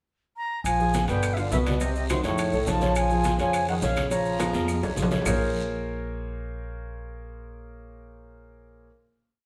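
Sophisticated and driving, this short, complete Afro-Cuban jazz piece races along at 209 BPM in 4/4 with a straight feel in Bb minor. An airy silver concert flute with vibrato carries a free-roaming, tongued melody that never settles on a recurring motif, sitting distant in the mix, while a clear trombone with light vibrato and a soft attack shadows it with a harmony line mostly in thirds. Up front, a dark, pizzicato upright bass plays a tumbao that anticipates the chords, and a natural-sounding grand piano drives a montuno in octaves. Behind them, low-tuned, thick-skinned congas mix slaps and open strokes, ringing metal-shell timbales add a shell pattern and bell, woody claves mark a two-bar time line, and a raspy guiro and grainy maracas fill out the groove. After a pickup bar, the band plays live together in a moderate stone room, reaching a drum fill at 4.5 seconds before landing at 5.3 seconds on a Bbm9 final chord.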